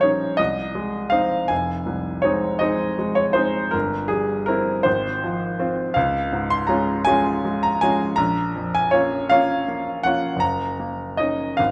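A rubato 6/8 sway at 54 dotted-quarter beats per minute carries this hopeful, lyrical romantic character piece for solo piano, an excerpt cut from a longer work, where a clear, natural baby grand with short sustain sits up front across a span from F1 to C6, passing through Fm7 and C/G before settling into Db major at 6.0 s, all bathed in the wet reverb of a recital hall.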